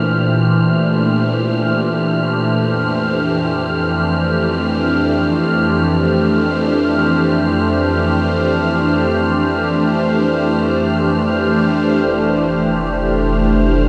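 Floating in free time, this weightless ambient passage, taken from a longer piece, drifts on an evolving wavetable pad that holds sustained chords, moving from Bbmaj9 to F69 at 2.5 seconds. The pad sits bright and up front, its detuned unison triangle tones morphing through a phaser, with slow attacks and long releases. Above it, a breathy, wind-like tuned noise layer hovers high, dark and airy at a lower level, sustained throughout. At 12.0 seconds a round, deep sine sub bass enters with a mellow tone, sustaining beneath the pad until the close at 13.9 seconds. A huge, wet reverb with a long decay wraps the passage in a warm, spacious haze.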